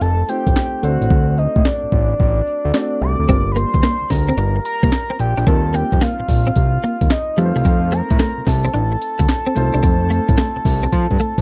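A swung sixteenth-note groove at 110 BPM in 4/4 drives this confident, bouncy new jack swing excerpt. It rests on a gritty, pitched-up breakbeat kit of thumpy kick, medium-tuned snare, hi-hat, handclaps and tambourine, placed up front; the hi-hats are muted between 1.1 and 3.3 seconds, and a drum fill closes the clip at 10.9 seconds. A fat, saturated analog bass blending sawtooth and square waves sits equally up front, while a warm baby grand piano supplies accompaniment in the background. A soft, round octave-layered synth lead carries the melody with a sub octave, detuned tones, vibrato and chorus, and from 3.3 seconds a clean, direct-recorded electric guitar adds a picked, compressed riff treated with ensemble chorus. The chords move from F7 through D7 and Gm7 to Eb69 and back to F7, all captured in a dry, close 1970s-style studio sound.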